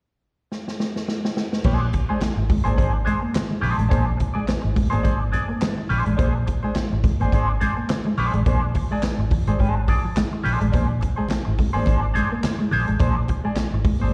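Funk at 106 BPM in Bb mixolydian with a swung sixteenth feel, playful and gritty, heard as a live gig through a venue's PA on cassette with recital-hall reverb. An up-front big-band drum kit with a boomy kick opens with a fill from 0.5 seconds, then at 1.6 seconds a dark, foam-muted fingered bass, congas low in the background, a bright, twangy picked guitar comping through wah, vibrato and slapback echo, and a mellow fingered guitar riff with ensemble chorus all arrive over a Bb9 chord. The bass sits loudest, round and amped, while the thick-skinned, low-tuned congas stay soft behind the kit's handclaps, hi-hat and crash.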